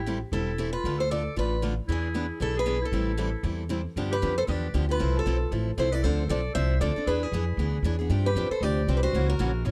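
A woody, boxy parlour guitar picks the melody from the first moment as a soft, distant clarinet with vibrato traces a second line and a thumpy, dark gut-string upright bass sits up front, joined at 0.1 seconds by a bright, fresh-strung accompanying guitar with audible finger squeak, in this bittersweet, swinging fragment of acoustic string swing in A minor at 232 BPM, heard in a dry, close 1970s-style studio room with small room ambience.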